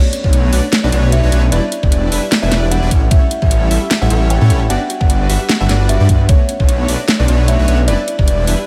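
A dry, up-front mix of pumping, tape-warm electronics opens this bittersweet, dreamy future bass excerpt in B minor at 151 BPM with a swung half-time feel, where a buzzing, woody kalimba with 12-bit sampler grit and delay carries the melody over a bold, bright detuned polysynth riff, very quiet nasal FM pluck arpeggios, a thick saturated detuned saw bass, a knocking kick and a huge snare with metallic hats, all moving through Bm9, Em7, A7 and Gmaj7 before the kick and kalimba drop out at 8.3 seconds.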